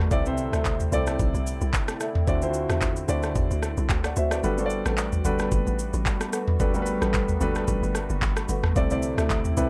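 Amapiano with a relaxed, swung feel, where an up-front concert grand piano with deep bass comps through C69, D9 and Gmaj9 over a bouncy, percussive log drum bass and a knocking, gritty R&B drum kit of kick, handclaps, rim click, shaker and toms whose kick drops out from 4.4 to 5.5 seconds, while a soft, flute-like pad with chorus and sidechain pumping sustains chords in the background beside mellow, woody marimba stabs touched with delay, all in light reverb.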